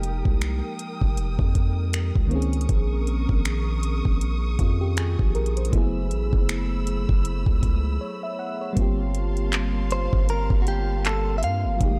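A smooth, up-front R&B drum kit of finger snaps, handclaps, metallic hi-hat and a knocking electronic kick sets a late-night, longing mood at 79 BPM with a lightly swung sixteenth feel, over a deep, sine-like 808-style bass that hits fast and decays long. A soft, round FM electric piano with chorus and a faint noise layer carries the minor eleventh chords, while a lush bowed string section with vibrato and portamento sits low in the mix. A clean, direct-recorded electric guitar with a scooped, compressed tone picks the melody only from 0.0 to 2.3 seconds and again from 9.9 seconds after a brief break at 8.0 seconds, all in a dark, dry, warm production of this excerpt cut from a longer piece.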